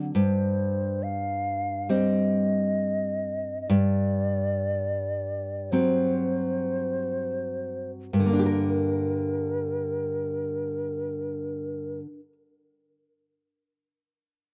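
This dry, close recording has a 1970s studio character, with a touch of reverb around two up-front players. It is an elegiac, yearning romantic duo in 4/4, cut from a longer piece, and it moves in a supple rubato that slows through its opening 8.1 seconds. A full-bodied nylon-string classical guitar, fingerpicked and carrying an audible finger squeak, supplies the accompaniment from the very start, shifting from Cm/G to D7/G over a low G pedal. The silver concert flute, close-miked, pure and hollow in tone with vibrato and tongued notes, carries the melody in a mellow middle register just above the guitar. At 8.1 seconds the music settles onto a G minor chord for a brief second section, and the guitar rings on until 12.3 seconds, just after the flute's final note.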